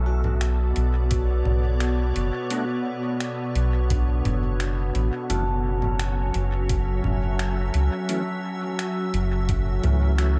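A round, deep analog bass sits up front in this spacious, hazy ambient dub excerpt at 86 BPM in 4/4, anchoring a single Bm7 chord in B minor. Behind it, a soft organ-like pad sustains calm, pure chords with ensemble chorus and its own reverb. A vibraphone struck with medium mallets plays metallic, ringing arpeggios through tape echo, with a slow motor vibrato. A muffled, pitched-down sampler-style kit of congas, finger snaps and hi-hat carries overdrive, studio reverb and dub echo, and a soft electronic kick, re-recorded in a small room, joins in the background at 1.1 seconds alongside a very quiet, breathy, wind-like noise texture held on one pitch. At 2.5 seconds a reedy tonewheel organ enters with stabs, key click, chorus vibrato, slow rotary speaker and dub echo, while a light reverb wraps the mix in a gentle sense of space.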